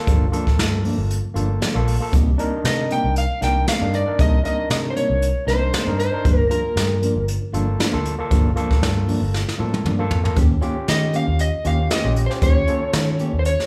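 A gritty, barky overdriven electric piano opens this soulful, mournful soul blues excerpt in G minor at 117 BPM, joined at once by twangy clean guitar stabs in the background, a round, foam-muted electric bass and an up-front brushed jazz kit with a boomy kick. At 2.7 seconds a dark, slightly broken-up slide guitar carries the melody high above, falls away, and returns at 10.9 seconds after a drum fill at 9.3 seconds. The band sounds live in one large studio room with moderate reverb over a Gm7, Cm7 and Eb7 progression.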